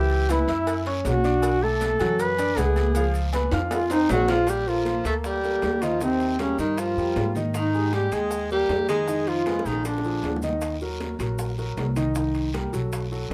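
This Afro-Cuban jazz excerpt moves at 156 BPM in a straight 4/4, with a sunny, sophisticated mood over shifting, colourful jazz harmony. A folk-style duduk carries the melody up front, its tone warm with vibrato and scooped notes. A concert grand piano accompanies with an intimate, natural sound, deep bass, long sustain and audible action noise, while a woody pizzicato upright bass with steel strings sits forward in the mix. At 4.1 seconds a bright jazz-style tenor saxophone enters with a second line, using light vibrato and scooped notes, and both it and the duduk stop at 10.4 seconds. Underneath, a percussion section blends ringing metal-shell agogo bells and timbales, thin-skinned high-tuned congas heard distant in a large room, tight, very quiet cowbell and bongos, a raspy close guiro and grainy, mellow maracas, with drum fills marking the phrase turns. Light reverb gives the whole a gentle sense of space.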